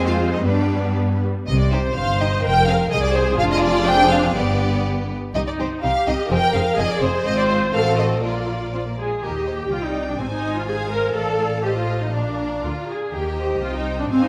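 Dramatic and urgent, this quick classical-period movement for string orchestra moves at 116-128 BPM in 2/4 with a rubato feel, starting in C minor and turning toward Eb major from 7.2 s in a passage cut from a longer piece. A lush, focused violin section carries the melody up front while a second, clear and even violin line sits beneath it, an expressive viola section fills in the accompaniment, and the bass is held by a distant cello section in the background alongside a smooth, prominent double bass section, all bowed with vibrato. The ensemble sits in a wet concert hall reverb with a 1.8 s decay.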